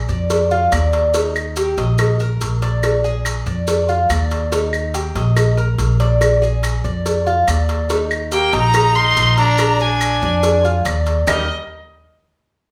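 Relaxed and warm, this Cuban son and guajira excerpt rides on a mellow, metallic-edged picked tres playing arpeggios over a dark, thumpy pizzicato upright bass, with grainy maracas, round low-tuned cowbell and bongos and woody background claves in a live-sounding room with lush reverb, until a rich, smooth bowed violin melody and a raspy, growling trumpet second line enter together at 8.3 seconds.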